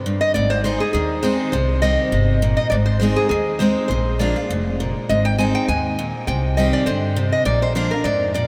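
Bluegrass at a brisk 202 BPM with a light swing, rustic and lonesome in mood, this short excerpt is steeped in a huge, echoing reverb that makes the players sound lost in a vast space. A bright, up-front picked steel-string acoustic guitar and a woody pizzicato upright bass start together. From 0.2 seconds a metallic, nasal lap resonator guitar played with fingerpicks and a slide carries the melody over a cycling Ab, Cm and Bb progression.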